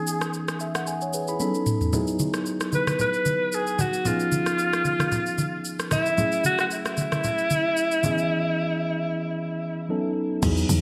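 Amapiano at 113 BPM with a soulful mood, this excerpt sets a clear, distant-sounding alto saxophone, full of vibrato and scooped notes and shaded by a low-pass filter and delay, over a mellow, clean tine electric piano moving through C#m9, Emaj7 and F#m9 colours. A soft, tape-tinged R&B kit with gated reverb lays down a 16th-note swing of kick, hi-hat, rim click, shaker, toms and crash, and damped, low-tuned congas with a thick-skinned vintage tone join at 1.9 seconds. A filter sweep runs through the section into a break at 8.3 seconds, and a punchy, woody log drum bass arrives on E2 at 10.4 seconds, all framed by a wet plate reverb and bright 1980s-style digital production.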